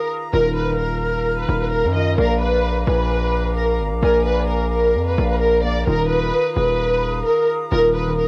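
A half-time hip hop groove at 130 BPM in 4/4 carries this eerie, menacing excerpt, tuned to A4 = 439 Hz and moving from Ebsus2 to Bb and back to Ebsus2. Up front, a dark studio violin section carries the lush, expressive melody with vibrato and portamento, softened by a low-pass filter and cassette tape coloring. Warbly, detuned lo-fi synth keys with chorus supply the accompaniment, an airy flute section holds soft sustained chords high above, and a heavy, saturated 808-style bass enters at 0.3 s, aggressive and distorted with a noise layer, all within a home cassette-recorded studio ambience.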